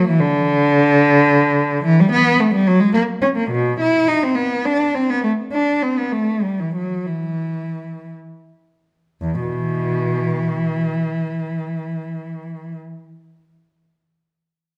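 A lilting 6/8 pulse, pushed and pulled with rubato, carries this introspective, solemn fragment of a baroque-style suite movement for unaccompanied cello. A single bowed cello plays from 0.0 to 12.8 seconds, sitting up front and ranging from E2 to E4, with a rich tone shaped by vibrato, soft attacks and expressive portamento. The opening passage slows as it goes, easing from 4.4 seconds until a new section begins at 9.2 seconds. The instrument is tuned slightly below modern concert pitch, at A4 = 435 Hz. A wet recital-hall reverb with a 1.4-second decay surrounds the cello, lending the solitary line a spacious, reflective air.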